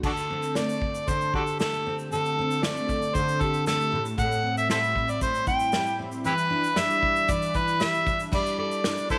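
Acoustic pop at 116 BPM in straight 4/4, easy-going and heartfelt, with an up-front, double-tracked fingerpicked jumbo steel-string guitar laying down full-bodied accompaniment over chords moving from D7sus4 through Am7 and Em7 to Gsus2. An acoustic drum kit played with bundle sticks brings a tight kick, medium-tuned snare, shaker and crash cymbal in a small-room sound, while an amplified, overdriven harmonica carries the solo melody from 0.1 seconds, gritty and punchy with light vibrato and tongue slaps. The short piece sits in a moderate echo chamber reverb that gives it a lingering glow.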